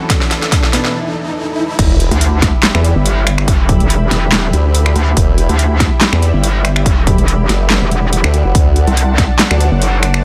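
An up-front formant-sweep wobble bass, saturated and chorused, drops in at 1.8 s, joined at 2.1 s by a bright, metallic FM wobble bass, to drive this menacing, chaotic heavy wobble dubstep excerpt at 142 BPM in E minor with a half-time, lightly swung feel. It follows a brief opening where a worn baby grand piano melody with tape echo, a riser and sub drop, and a drum fill build toward the drop, while a punchy electronic kick, a tape-warm kit with a huge snare and metallic hats, a lush detuned unison pad pumping under sidechain with chorus and phaser, and a very quiet, deep wave-folded ambient pad fill out a dry, loud mix that moves from Em to D at 8.5 s.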